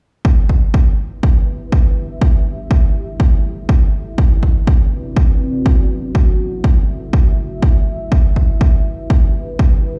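Hypnotic and warm, this short deep house excerpt moves at 122 BPM in 4/4 with a light 16th-note swing, set in E minor and tuned slightly flat of standard pitch. A punchy, overdriven electronic kick sits up front from 0.2 seconds, its layered, produced thump re-recorded in a large room. At 1.4 seconds a deep, dark ambient pad enters with slow-attack sustained chords between C4 and E5. Chorus and its own reverb soften its detuned sawtooth and sine unison voices, sub octave and vintage warble, while sidechain pumping makes it breathe. The pad sits well beneath the drum in level and rings until the 10.0-second cut, moving through Em7, D13, F#m7 and back to Em7. The whole passage sounds as though played on a big sound system in a bare room, and a large studio reverb gives it a spacious, moody depth.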